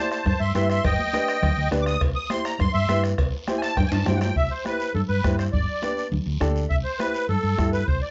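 A straight 4/4 cumbia groove at 205 BPM drives this sunny, danceable latin snippet in C major, with a soft-beater bombo in a live room, a raspy, close guiro, high-tuned, ringing congas in the background, and metal-shell cowbell and timbales that play from 0.3 s and stop at 4.3 s, near the end of a drum fill running from 3.8 s, while a reedy, shimmering musette accordion carries the melody up front over a round, amped hollow-body electric bass and a dark, woody, vintage upright piano in a lightly reverberant mix.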